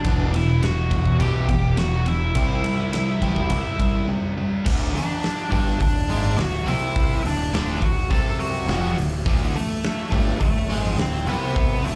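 A huge, punchy arena drum kit sits up front with bright cymbals and a pumping hall sound, driving this cathartic, bittersweet quiet-loud alternative rock excerpt, heard live through a club's PA. A dark octave-fuzz lead guitar carries the melody with slapback echo, over a crunchy overdriven guitar riff in the background, a very quiet thick fuzz guitar riff, and a growling, overdriven picked bass. A brief break at 4.1 seconds gives way to a new section at 4.7 seconds, as the chords move from Em and C to D.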